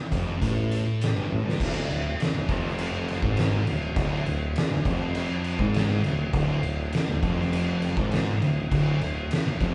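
Stoner and doom metal at 101 BPM in D minor, sludgy and heavy, with two thick, picked fuzz guitars grinding out a low riff in the background while a tuba with jazz-style vibrato carries the bass line beneath them. An oversized, low-tuned acoustic drum kit sits up front, gritty and saturated, with a punchy kick, fat snare and dark cymbals, and it plays a fill at 1.3 seconds just before the riff shifts into a new section at 1.6 seconds. The band sounds as if it is playing live in one large studio room with moderate reverb, and the top end is rolled off above 10.6 kHz.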